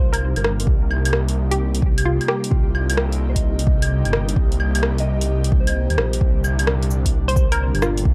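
Wistful and ghostly, this future garage excerpt, cut from a longer piece, moves in a swung 4/4 over a Cm7 chord that shifts to Gm near its close. An up-front, menacing detuned saw bass with a saturated filter swell anchors the low end and pumps with the sidechain. A breathy, airy pad sustains soft chords through chorus and phaser, joined by a clean, dark electric guitar set in the background. A bouncy, hollow square pluck carries the melody with bright chorus, 12-bit sampler grit and analog delay, dropping out early and then returning briefly near the end. The overdriven deep house kit of cabasa, claves, hi-hat and rim click sits up front with a deep electronic kick that enters at 0.7 seconds, while the guitar stops at 6.4 seconds and a barely audible reversed, granular texture swells in at 7.6 seconds. Light reverb gives the whole a dark, warm production.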